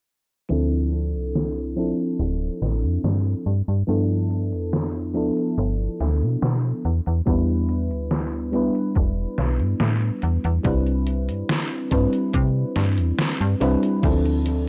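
Vaporwave in a hazy, woozy D dorian at 71 BPM: a round, warbling FM electric piano with subtle chorus and analog delay drifts through Dm9, G13, Em7 and Cmaj9 over a snappy, metallic slap-like FM bass with tube saturation and an overdriven, detuned 8-bit drum machine of crash, hi-hat and snare, while a thumpy overdriven electronic kick joins at 7.3 s, all heard through a filter sweep and a dry, gritty hardware sound in this excerpt cut from a longer piece.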